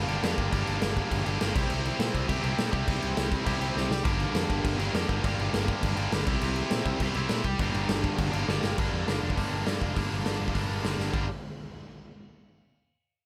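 Raw and angry, this punk rock excerpt charges ahead at 204 BPM in straight 4/4, centred on G dorian as the chords move between Gm and C. A tight, double-tracked distorted guitar pushes its picked riff up front, with a growly, amped electric bass underneath and a gritty, saturated garage drum kit whose punchy kick, medium-tuned snare, hi-hat and crash ring in a pumping stone room. Drum fills land at 3.8, 8.5 and 11.0 seconds, and the dry, close sound keeps the whole band in your face.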